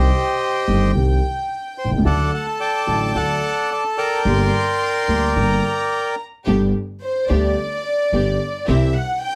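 Over a rubato 4/4 pulse, this tense, sultry tango excerpt sets a reedy, up-front bandoneon melody against a floating, soft-attacked sul tasto violin section line, with a mellow, vintage grand piano and woody, thumpy pizzicato upright bass beneath. After the bandoneon falls away at 6.2 seconds, a lush, focused string section adds vibrato stabs from 6.5 seconds until 8.9 seconds, when the violins carry on alone, within a moderately reverberant studio room.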